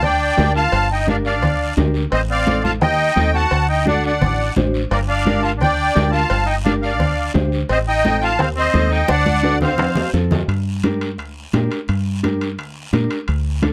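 Close, dry and detailed, this fiery, driving cumbia excerpt in G minor moves at 172 BPM, with a reedy, shimmering musette accordion up front carrying the melody over a roomy, distant trumpet second line that has light vibrato and scooped notes. A deep, round fingered electric bass sits forward alongside bright, soft-handed congas, ringing vintage cowbell and timbales, and a raspy guiro, while a dark, clean, compressed electric guitar enters at 0.4 seconds to comp through Gm7, Adim and D changes. A drum fill from 9.1 seconds leads into a new section at 10.5, where accordion and trumpet have dropped out and the rhythm section carries on alone.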